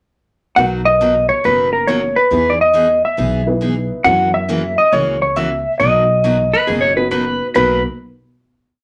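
This short western swing piece in a country vein feels playful and down-home, swinging its eighth notes at 137 BPM in 4/4 in B major, moving through Bmaj7, Emaj7 and F#7 before returning to Bmaj7. A clean electric lap steel guitar sits up front with the melody from 0.6 seconds, played with fingerpicks and slide, its compressed, dark tone spinning motif-based phrases shaped like sentences. Beneath it, a detuned, jangly honky-tonk upright piano offers syncopated comping in close voicings with a boxy, short-sustain character, while a bright, full-bodied jumbo acoustic guitar with fresh strings is picked four to the bar, finger squeak audible. An acoustic upright bass on gut strings supplies a woody, thumpy two-beat root-and-fifth line. At 6.5 seconds a second fingered lap steel joins with scooped slide notes, volume swells and answering blues licks, and the band, heard in a small, wet room reverb, lands on a final chord at 7.6 seconds.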